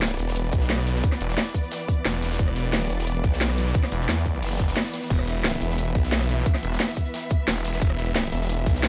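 A snarling, tube-saturated sawtooth bass growls up front with sidechain pumping, as do the distant, bowed strings holding an E5 chord with vibrato and portamento, while an overdriven drum and bass kit with a cracking snare and bright hats rides over a very quiet, gritty breakbeat kit, and a tight electronic kick joins at 0.5 s to push this dark, aggressive drum and bass fragment along at 177 BPM in a small room ambience.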